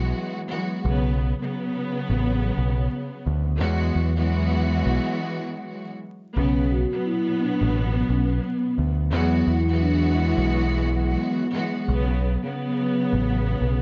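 Boom-bap hip-hop at 87 BPM in B dorian, tough and gritty, with a swung 16th-note feel and a dark, warm production dusted with vinyl crackle and light reverb. A lush, bowed studio string section with vibrato and a cassette-tape character sits up front over a round, amped dub bass, alternating Eadd9 and Bsus2 chords. After a stop from 5.0 to 6.4 seconds, a mellow, ringing soft-mallet vibraphone carries the melody through tape echo until 11.5 seconds.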